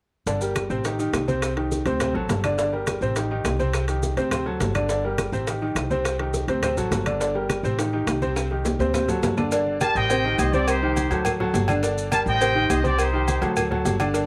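A home cassette recording with light reverb carries this fiery, danceable salsa excerpt at 208 BPM in G harmonic minor, where a brilliant, up-front upright piano and a dark, thumpy pizzicato upright bass cycle through Gm, Am7b5, Cm and D7 over background layers of tight, high-tuned bongos and cowbell, low-tuned thin-skinned congas and woody claves, alongside grainy maracas and ringing metal-shell timbales and agogo bells, until a drum fill at 8.4 seconds leads to a punchy, vibrato-laden trumpet section bursting forward at 9.8 seconds.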